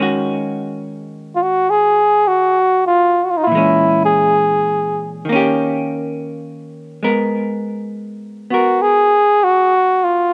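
A warm flugelhorn carries the melody in this wistful, melancholic jazz ballad, entering at 1.4 seconds with a present, up-front tone and light vibrato in a solo jazz style. Beneath it, a vintage hollow-body electric guitar plays accompaniment from the very start, its clean, picked sound dark and close, sitting lower in the mix than the horn. Both parts carry a slapback echo, and a light reverb surrounds the pair, while the recording itself has an open-air quality free of room sound. The swung eighth notes give the slow pulse a gentle lilt as the harmony moves from Ebm7 through Bbm7b5 and Eb7 to a closing Abmadd9. Cut from a longer piece, the passage runs to 10.3 seconds.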